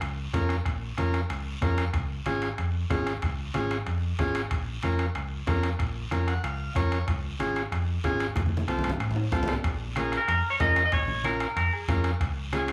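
A fiery, danceable cumbia excerpt in Bb minor at 187 BPM opens with a dark, round fingered electric bass, a soft-beater bombo, raspy guiro, damped low-tuned congas and ringing metal-shell timbales, joined at 0.3 seconds by a buzzy, overdriven vintage combo organ up front that takes a fill at 6.1 seconds, before a drum fill leads into a new section where a bright, twangy clean electric guitar with spring reverb carries the melody from 10.0 seconds, all played live in one room.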